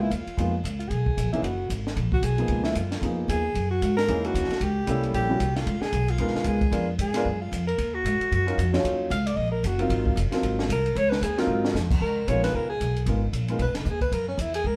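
Sophisticated and relaxed, this swinging small-group jazz fragment features a clear, close-miked alto saxophone soloing with vibrato from 0.0 to 14.8 seconds, over a polished grand piano that comps until 13.6 seconds, a woody, thumpy pizzicato upright bass, and a dark, smooth cocktail drum kit with a high-tuned snare and punchy kick that plays a fill at 11.5 seconds, all set in a moderate room reverb that captures the band playing live together.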